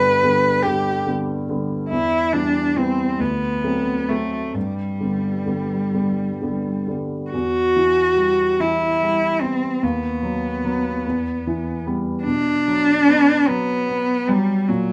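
A single bowed cello sings a rich, vibrato-laden melody from the opening moment, carried up front over a grand piano accompaniment with a warm, vintage tone, in a tender, warm romantic classical duo. The music sways in a slow, rubato 6/8 at about 42-50 dotted-quarter beats per minute, beginning in G major and turning to E minor at 7.3 seconds. Close, detailed microphones and light reverb frame the sound, and this passage is cut from a longer piece.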